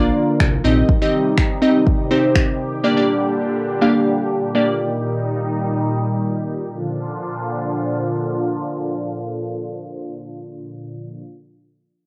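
This summery, euphoric dance-pop fragment opens all at once on a Bb major chord: a glassy wavetable pluck, a mellow, detuned supersaw swell and a glossy, dark chorused synth bass, all heard through a filter sweep, at 123 BPM in a straight 4/4. The bass pulses under the sidechain pumping only briefly. A deep house drum kit of deep kick and finger snaps arrives at 0.4 s, up front and tape-warm with a small-room sheen. The crystalline, full-bodied pluck, chorused, pumping and bathed in plate reverb, carries the accompaniment through a progression of Bb, Cm/Bb and Gm/Bb, then stops at 4.8 s as the harmony moves to Eb/Bb. The soft-attack supersaw, treated with phaser and cassette saturation, sustains its evolving chords through a return to Bb until 11.2 s. The whole piece has the hazy, intimate character of a home cassette recording in a moderate small room.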